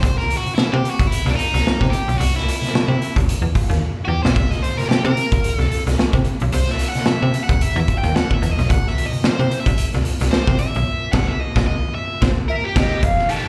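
Heard as a live club gig through the venue's PA with little reverb, this playful, gritty funk cut swings over a snappy, metallic slap-like FM bass and a raw, saturated garage drum kit up front with a punchy kick, while an overdriven electric guitar with slapback echo solos until 13.0 seconds, joined by a drum fill at 3.8 seconds and a band accent from 10.9 seconds, before a breathy, bright concert flute slips in at 12.5 seconds just as the piece is cut off.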